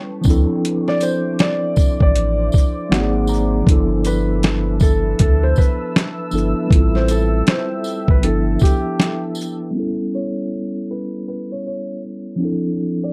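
A swung 79 BPM boom bap groove of gritty, pitched-down sampler drums with a thumpy kick and faint jingly tambourine drives this hazy, melancholic lo-fi hip hop excerpt in D dorian, where a round sine sub bass and mellow tine electric piano chords with cassette-tape colour sit up front, a dark, detuned ambient pad hovers behind, and a soft felt-muted upright piano with audible action noise carries the intimate melody, as the electric piano adds a fill at 2.5 seconds and the drums, tambourine and bass fall away before a filter sweep at 9.7 seconds.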